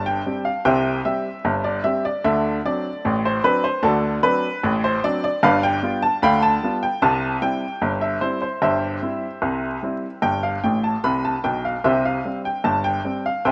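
A rough home demo sound with vinyl crackle, light reverb and a small-room ambience frames this lively, jaunty ragtime excerpt at 75 BPM in 2/4 and C major, where a woody, up-front upright piano with audible action noise plays alone over C, D7, G7 and C/G before a brief fill from 10.6 to 11.8 seconds lands back on C.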